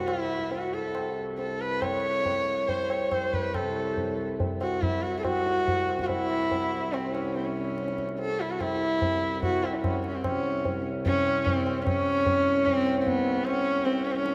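A rich sarangi carries the melody up front in this serene, radiant Hindustani excerpt in raga Marwa on C, its bowed line gliding with portamento, light vibrato and soft attacks while sympathetic strings shimmer around the airy, intimate tone. Beneath it, a hand-pumped harmonium holds a low drone, reedy and breathing, with a mellow, vintage, band-limited character. The tabla enters at 0.1 s, low-tuned with a short ring and a small-room, acoustic feel, keeping a straight 4/4 pulse. The tempo gradually speeds up from about 137 to 152 BPM, and the music moves into a new section at 10.2 s. A vast cathedral reverb with a long 5.1-second tail surrounds the performance, giving it a deeply echoing, serene atmosphere.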